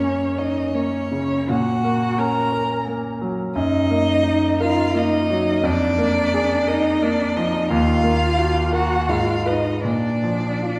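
Melancholic and solemn, this slow romantic piano-trio movement in 3/4 unfolds with uneven, rubato beats as a rich, smooth violin sings the melody with vibrato up front, a dark cello traces a second line with expressive portamento, and a clear concert grand with deep bass supplies the accompaniment, all set in a wet concert hall heard from further back and shifting into a minor key at 3.6 seconds in this fragment of a longer piece.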